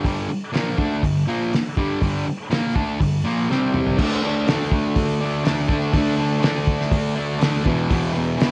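Raw and swaggering, this garage rock fragment pairs a bright, compressed, double-tracked fuzz guitar riff, up front and distorted, with a cloth-damped, thuddy acoustic drum kit whose fat snare, tight kick and dark cymbals sound muffled and saturated under vintage 12-bit sampler grit, the two heard in a moderate club reverb on cassette tape, with a drum fill at 3.5 seconds leading into the second section at 4.0 seconds.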